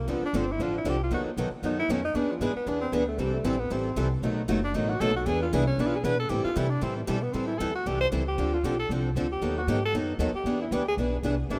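Swinging eighths at 231 BPM drive this virtuosic A minor jazz manouche excerpt, where a breathy, subtoned tenor saxophone solos up front over woody, thumpy pizzicato upright bass on gut strings, a bright picked archtop guitar with audible finger squeak, and a boxy swing guitar with fresh strings set in the background, all cycling through Dm7, B7, E7 and Am7 inside a lush hall reverb and a rough home-demo mix.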